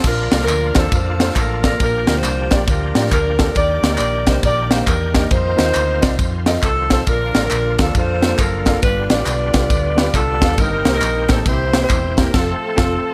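This is a snug, small-room recording of an uptempo gospel excerpt at 137 BPM in Bb major, jubilant and soulful, with a swung eighth-note feel in 4/4. Up front, a crisp, polished fusion drum kit with a high-tuned snare, tight kick, ride and crash drives the groove. A warm saxophone section carries the melody with vibrato and a soft attack in a jazz style. Underneath, a dark, round, punchy hollow-body electric bass anchors the low end. Further back sit a worn, woody, slightly detuned upright piano, a bright, shouting tonewheel organ holding chords through overdrive, chorus vibrato and a slow rotary speaker, and a vintage, band-limited layer of group handclaps, egg shaker and tambourine. The harmony moves from Bbmaj7 through Ebmaj7 and F7 to G7 and C7, and the band hits an accent on F from 12.3 seconds as the passage closes.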